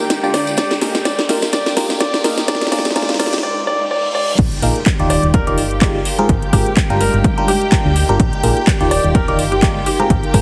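Piano house at 126 BPM with a light 16th-note swing and an uplifting, feel-good mood, tuned slightly low to A4 = 438 Hz. A build-up opens on a sparkling grand piano melody with delay, a biting phased FM electric piano riff, shimmering vintage string-machine violins under a filter sweep, a cloudy granular pad and a cracking, overdriven house kit with metallic hats and handclaps, while a tambourine, riser and reverse cymbal lift toward the drop. At 4.4 s a punchy overdriven kick and a round, dark FM bass arrive with an impact, and the sidechain-pumped parts cycle through jazzy chords such as Ebmaj9, Ab69 and Gm7 in a lush hall and a heavily compressed, radio-like mix.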